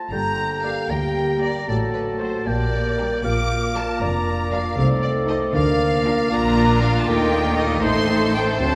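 Quick classical-period orchestral music in a rubato 6/8, restless and dramatic, where a focused, vibrato-rich violin section carries the melody over an oboe second line from 0.0 seconds, with a very quiet soft-attack clarinet and a smooth, even second violin section in the background, a distant bassoon and background violas as accompaniment, close-miked mellow French horns holding sustained chords, and a faint, intense cello section and full-bodied double basses on the bass, all bathed in the long, wet reverb of a church.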